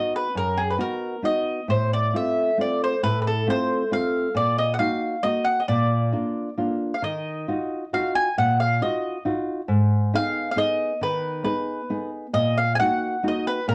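A mandolin carries a romantic, wistful Italian folk melody in triple time, its picked double strings mellow and round, over a classical nylon-string guitar accompaniment played with the thumb. Both instruments sit up front and play together throughout this short passage cut from a longer piece. A moderate studio reverb and a worn cassette-tape sound with warbly pitch drift give the recording an old, faded character.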